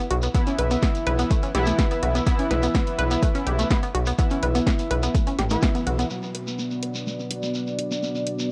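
A straight 4/4 pulse at 125 BPM drives this hypnotic, dark melodic techno cut from a longer piece, with an overdriven electronic kick up front from 0.3 to 5.7 seconds, a punchy analog drum machine's hi-hat and snare, a grainy shekere, and a gritty, aggressive sync bass pumping beneath round, detuned pluck arpeggios and edgy, nasal sync-sweep polysynth stabs, all over an E5/B chord. After a band accent at 5.6 seconds, the harmony moves to B minor at 6.1 seconds as a filter sweeps across the arpeggios and a deep, moody analog pad enters at 6.7 seconds. The sound is dry and hardware-raw, colored by transformer saturation and cassette tape.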